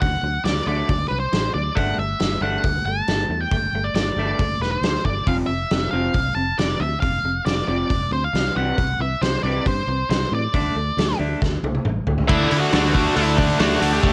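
Quiet-loud alternative rock at 137 BPM in a straight 4/4, this short excerpt from a longer piece feels restless and anthemic, with light reverb and the grainy character of a home cassette recording. An up-front, dark octave-fuzz lead guitar carries the melody with cassette-tape coloring, while an electric guitar through a small old amp picks lo-fi, twangy, slightly broken-up arpeggios until 12.3 seconds. A fingered electric bass sits underneath with a direct, warm tone, and a loose indie drum kit, roomy and distant yet up front, with dark cymbals, a punchy kick and a medium-tuned snare, also carries a tape-worn, rolled-off top. The chords move from D through Gsus2, F5 and C to D5, and a drum fill from 11.4 seconds tips the song into its louder second section. At 12.3 seconds two picked riff guitars crash in on D, one high-gain distorted part sitting in the background and one bright, compressed overdriven part, thickening the sound for the closing moments.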